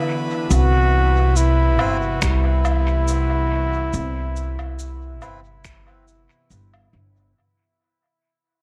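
A soft, breathy pad opens at 0.0 s with slow-attack chords moving from an E7 voicing to Cmaj7, its detuned, chorused shimmer setting a hazy, meditative ambient dub mood at 70 BPM in 4/4 with a light swing. From 0.5 s a clear, close-miked trombone carries a short, classical-style solo melody up front, trailed by dub echo, while a woody pizzicato upright bass sits prominently beneath it. Sampler-style shaker, woodblock and finger snaps join at the same moment, sounding muffled and tape-warm with their own dub echo. A reedy, nasal melodica adds very quiet stabs from 1.8 s, and a deep, overdriven electronic kick sits faintly in the middle of the passage. The echo-heavy mix has small-room ambience and fades out across the whole of this brief excerpt cut from a longer piece.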